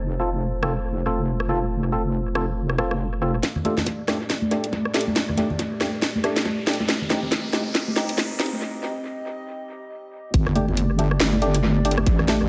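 Deep dubstep at 139 BPM in a swung, half-time feel, meditative and cavernous, cut from a longer piece and moving through F, Gsus2 and C minor. A dark, detuned analog pad with lush chorus holds sustained chords throughout, while a hollow, mellow organ stab with chorus and delay recurs over it. In the opening, a breathy, wind-like noise texture sits very quiet beside a heavy, saturated wobble bass until 3.4 s; from there a tight electronic kick joins the garage kit's cracking snare, hi-hat and rim click, and small-room congas soaked in dub echo come in as a drum fill and a background riser lead to a break at 8.6 s, before the wobble bass returns up front for the drop at 10.3 s inside an echo-heavy mix with plate reverb.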